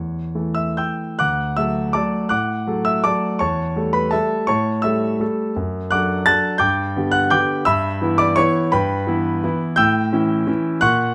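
A warm concert grand piano carries this graceful, elegant classical waltz alone, cut from a longer piece and lasting about 11.1 seconds. Set in D major and 3/4, it moves with a rubato feel, its tempo drifting between 135 and 182 BPM, and the instrument is tuned slightly low to A4 = 439 Hz. The piano spans a generous range from D2 up to A6, with a deep bass and a natural, up-front presence captured by close, detailed microphones. A brief opening on A gives way at 1.2 seconds to a longer passage that travels through D, A7/E, D/F#, G and Em/G before settling on A7. A moderate large-studio reverb lends the solo a gentle sense of space around its warm, natural tone.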